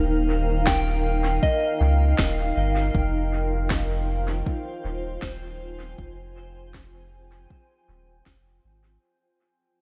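A soft kick and a woody snare, both tape-warm, come in at 0.7 s in a straight 4/4 at 79 BPM, the snare trailing a dub echo, in this peaceful, spacious ambient dub passage that fades out across its length. A deep, round sub bass sits up front beneath a cloudy, evolving granular pad that moves from Eb to Fm9, while a pure FM bell traces gentle arpeggios through chorus, phaser, a low-pass filter and diffuse delay. A lush hall reverb soaks the dreamy mix.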